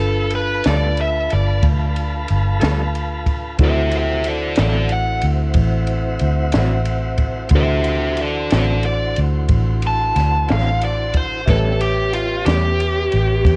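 An overdriven, biting lead guitar sits up front and solos throughout this slow blues fragment in 12/8, its picked lines giving the piece a rollicking yet laid-back mood. Beneath it, a round, foam-muted fingered electric bass sounds dark and amped and sits close in the mix. A compact cocktail drum kit of kick, snare and ride enters at 0.3 s with a punchy kick, a high-tuned snare and a rolled-off top, heard in a small room. A tonewheel organ holds smooth, clean chords with audible key click through a fast rotary speaker, while a mellow tine electric piano plays in the background, joined at 0.7 s by a slightly broken-up, lo-fi guitar through a small old amp with tremolo. The harmony moves through G9, D9 and A9, and the recording carries light reverb and the warbling pitch drift of worn cassette tape.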